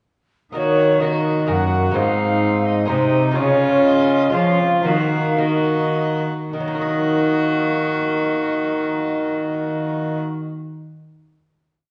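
At 0.5 seconds a short, solemn Renaissance-style consort dance in a rustic triple metre begins: a mellow alto recorder carries the melody with an airy, woody chiff and expressive vibrato, over a bowed cello bass that sits up front. A gut-string viola adds a nasal, period-style second line in sustained chords that follow the rhythm of the tune, while a trombone with a brilliant, vintage tone joins a moment later in the background, doubling that chordal role. A delicate, fingerpicked lute with double strings fills in rolled chords behind them. The harmony moves from Eb minor through Ab and Db before returning to Eb minor, and the tempo, starting somewhere between 100 and 128 BPM, slows from 2.7 seconds. At 6.5 seconds the ensemble settles onto a long final chord, with the lute ringing on briefly after the others, all heard from further back in a reverberant recital hall with a soft top end.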